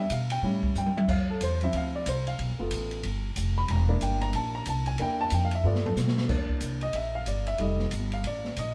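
Upright piano and pizzicato upright bass open this short big band swing excerpt together, with an acoustic jazz kit joining a moment later, and the piano carries a solo throughout, its intimate tone revealing audible action noise. The bass sits up front with a thumpy, gut-string sound, while the drums bring dark cymbals, a boomy kick and fills at 0.8 and 5.6 seconds. The trio sounds like a live band in one room, wrapped in a moderate stone-room reverb that suits its swinging mood.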